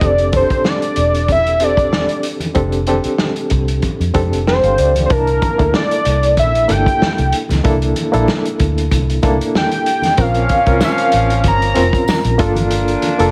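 A lightly swung 16th-note groove at 94 BPM in 4/4 drives this smooth, lush 1970s-style soul excerpt, where a fat, detuned sawtooth analog lead sings the up-front melody over a barky, overdriven reed electric piano with fast tremolo that adds a fill at 3.8 s, a dark, round, foam-muted fingered bass, a muffled, lo-fi vintage kit with punchy kick and medium-tuned snare, and very quiet, distant congas, before tight jazz-style horn stabs arrive at 10.2 s and a jingly tambourine sits in the background from 10.8 s, all in a small room.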